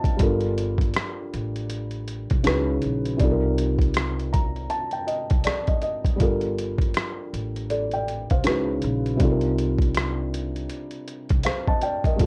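Worn, warbling cassette tape with a warbly pitch drift and a light reverb colours this hazy, reflective lo-fi hip hop excerpt at 80 BPM in C dorian, with a 60% swing on the 16ths. A soft, dark felt-muted upright piano sits up front, sounding intimate and vintage through its own tape, low-pass filter and plate reverb, and adds fills at 3.9 and 11.1 seconds. A gritty, compressed boom bap kit with a thumpy kick, hi-hat and rim click, re-recorded in a large room, drives the groove, while a woody pizzicato upright bass enters at 0.2 seconds under the Gm9, Dbm11 and Cm11 chords.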